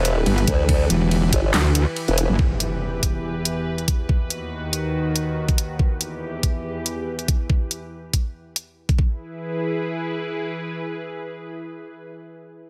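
A dry, overdriven mix opens this menacing, chaotic fragment of heavy wobble dubstep, where a formant-sweep wobble bass and a metallic, aggressive FM wobble bass, both compressed with chorus, snarl up front through a short drop that ends by 2.4 seconds, while an evolving wavetable pad with detuned, warbling, vintage chords pumps alongside them, also up front. The half-time, swung groove comes from a knocking overdriven electronic kick and a dubstep kit of handclaps, hi-hat, ride cymbal and a huge snare, with the kick dropping out briefly just before an electronic impact lands at 2.4 seconds. After the drums stop around 9 seconds, the morphing, full-bodied pad carries on alone in its own reverb.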